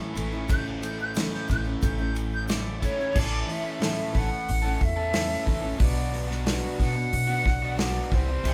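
Dusty and wistful, this folk rock and heartland rock passage, cut from a longer piece, captures a band playing live in a stone room: a full-bodied jumbo acoustic guitar, a double-tracked, overdriven electric guitar riff and a very quiet, grainy egg shaker that drops out at 3.1 seconds open together. A woody, thumpy pizzicato upright bass and a punchy, up-front acoustic drum kit with dark cymbals and bundle sticks soon join them, and an airy, distant silver flute enters at 0.5 seconds with an expressive, vibrato-laden solo before the harmony moves from A to Bm at 5.8 seconds.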